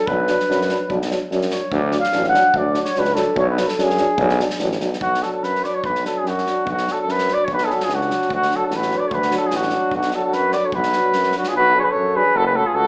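Fiery and restless, this Balkan brass band excerpt in a swung 2/4 opens with a mellow, smooth-topped flugelhorn solo carrying light vibrato, before a cornet takes the melody up front from 5.0 s and the flugelhorn returns at 7.6 s as a second line, while a clear tuba anchors the bass, two background euphoniums (one with vibrato, the other soft-attacked) hold the accompaniment, and an acoustic kit of punchy kick and medium-tuned snare played with bundle sticks drives underneath, set in a moderate recital-hall reverb with a small-speaker sound.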